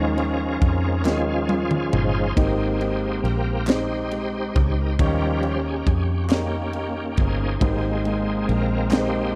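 Soulful and hopeful, this slow gospel passage in 6/8 at 46 BPM, in Ab major and cut from a longer piece, features a full, shouting tonewheel organ solo with key click, slow rotary speaker and chorus vibrato over sustained chords moving from Eb7sus4 to Abmaj9 and Abmaj7. A deep, open concert grand piano with tape echo accompanies, while a foam-muted, punchy fingered electric bass sits up front and a tight funk kit with a high-tuned snare plays a fill from 1.1 to 2.4 seconds. Crisp group handclaps enter at 1.0 seconds in the background, all within a lightly reverberant, echo-heavy mix.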